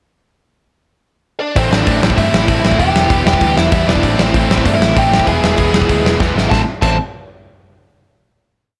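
A straight 4/4 punk rock pulse at 194 BPM drives this short, urgent and aggressive piece in A minor, anchored by a big, up-front acoustic drum kit with a tight kick, medium-tuned snare and rolled-off top playing a two-step groove, with a fill just before the final chord at 6.5 seconds. A bluesy lead guitar enters at 1.4 seconds with a distorted, motif-based melody partly doubled in octaves. At 1.6 seconds the drums kick in alongside a bright distorted guitar and a sludgy one playing driving eighth-note barre chords in the background, over a growly, punchy overdriven picked bass, as the chords move Am, Em, Am, E and back to Am in a light reverb.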